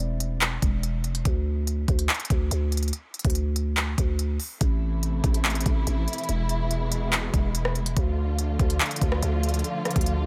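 A half-time trap beat at 143 BPM, built from a knocking kick, crisp hats, handclaps and rim clicks on an overdriven, up-front electronic kit, drives this dark, eerie hip hop excerpt in A harmonic minor, while a growling, buzzy 808-style bass with a fast attack anchors the low end and a bright, fingerpicked Celtic harp rings with delay in the background until 2.0 s, before a lush, expressive bowed string section with vibrato and portamento enters at 4.6 s over chords moving from Am to E to Dm, all set in a digital ambience.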